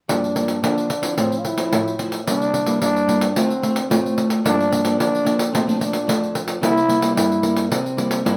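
Playful and joyful, this brief excerpt from a longer samba and choro piece moves at 110 BPM in a straight 4/4. A growling trombone takes the lead throughout, its raspy, gritty tone shaded with breath and scooped notes in a jazz style, staying within a narrow span from C4 to F4. Underneath, a small-sounding nylon-string guitar fingerpicks a warm accompaniment across a range from F2 to F4, moving through changes such as Gm7, C7, Dm7 and Bbmaj7. A jingly pandeiro sits up front with hard hands and the close feel of a small room, carrying the percussion. All three parts play together from 0.1 to 8.4 seconds inside a moderate studio reverb.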